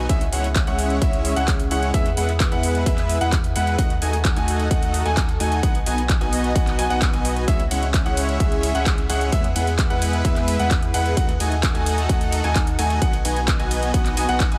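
Anthemic and emotional, this festival progressive house passage in a straight 4/4 is cut from a longer piece and cycles twice through C#m, E, D#dim and B. A huge, detuned supersaw carries the riff from G#3 to G#5, densely compressed and trailed by tape echo. A brilliant grand piano plays arpeggios high in the E5 to G#5 range, also with tape echo. Underneath, a deep, saturated sub bass holds the low end between B1 and E2, while a lush unison pad sits in the background with slow-attack sustained chords coloured by chorus and phaser, and each of these four parts breathes with sidechain pumping. From 0.1 s a punchy electronic kick sits up front, together with a big-room dance kit of handclaps, metallic hi-hats and ride cymbal, both drum parts carrying overdrive and studio reverb under a light reverb.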